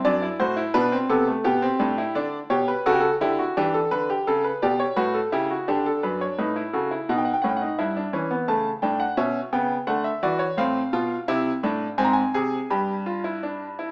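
Classical baroque-style three-part fugue for solo bright concert grand piano at 86 BPM in 3/4, elegant and stately, its brilliant, up-front tone reaching from deep bass at F#2 to B5 and moving through chords such as D7/F#, Em7, A7 and a closing turn from F/A to Ab and G, heard through a stone-room reverb and a small-speaker sound in a short cut from a longer piece.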